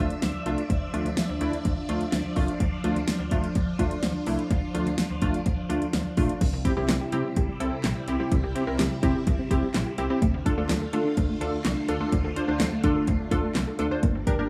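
A straight pulse from an up-front deep house drum kit with deep kick, fat snare, metallic hats and handclaps drives this nocturnal, melancholic synth-pop fragment, where a snappy slap-like FM bass and a punchy, detuned, chorused polysynth comp sit over swirling, bright vintage string-machine chords with phaser, until a soft, dark, round pluck joins at 6.4 seconds with arpeggios through chorus and tape echo, all in a rough home-demo mix with light reverb and small-room ambience.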